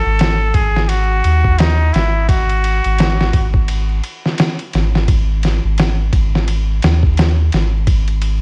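A breathy, nasal trumpet with a straight mute opens this melancholic, cinematic trip hop fragment, its close-miked, whispered jazz line carrying vibrato and a tape echo before it stops at 3.6 s. A round, deep dub sub bass and a compressed, pitched-down sampler-style kit, with a thumpy kick, snare and ride, sit up front in a swung groove. Vinyl crackle and digital ambience surround the parts throughout this short cut from a longer piece.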